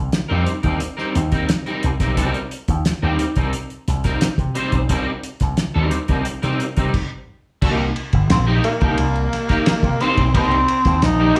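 A straight, hypnotic funk groove in 4/4 rides a punchy, envelope-filtered slap bass and a cloth-damped, thuddy drum kit with a fat snare and dark cymbals, while a twangy, slightly broken-up electric guitar with ensemble chorus accompanies over a Cm7 chord in a moderate club reverb, until a brief stop at 6.9 s gives way to a growling, breathy tenor saxophone melody entering at 8.3 s in this short cut from a longer piece.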